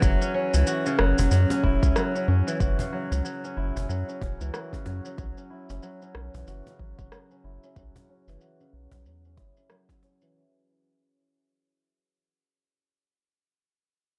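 A steel-string zither played with fingerpicks sits up front, its ringing, silvery arpeggios running through a low-pass filter and analog delay, with a filter sweep across the whole passage. This is an earthy, warm piece of organic downtempo in a swung 4/4, cut from a longer work and fading out across its length. Beneath it, a round analog bass, deep, nasal and dark with a fast attack and sustained notes, pumps with sidechain compression and drops out at 9.5 seconds. The drums and cajon stop by 10.3 seconds, and the zither then carries on alone until 12.9 seconds. The electronic kick is deep and overdriven, layered with an overdriven electronic shaker and rim click that is filtered low-pass. From 0.6 seconds a snappy acoustic cajon with snares adds a live-room touch. The harmony moves from F#5 to Bsus2 at 5.2 seconds, and the whole sits in a digital ambience with a dry, gritty hardware character.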